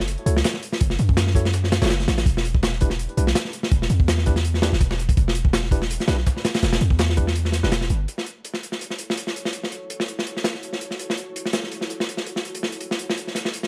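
A crunchy breakbeat at 165 BPM in 4/4, with a light swing on the 16ths, drives this raw, nostalgic jungle and drum and bass excerpt in F# phrygian, cut from a longer piece. The up-front acoustic kit of hi-hat, kick and snare sounds saturated and gritty, with a rolled-off top and high-pass filtering on each drum and the room. Beneath it, a very quiet, compressed sampler-style break of hi-hat and snare, tape-tinged and re-recorded in a small room, runs until 8.0 seconds. A deep, boomy 808-style bass with a sine body and a noise layer anchors the opening drop over F#m and Em, stopping at 8.1 seconds, while a worn, slightly out-of-tune tine electric piano plays lightly overdriven stabs with dub echo in the background. An ethereal, airy pad then enters at 8.9 seconds with slow-attack, detuned sustained chords on F#m7, treated with ensemble chorus and built-in reverb, as the main kit carries on. 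Vinyl crackle sits over the fairly dry sound.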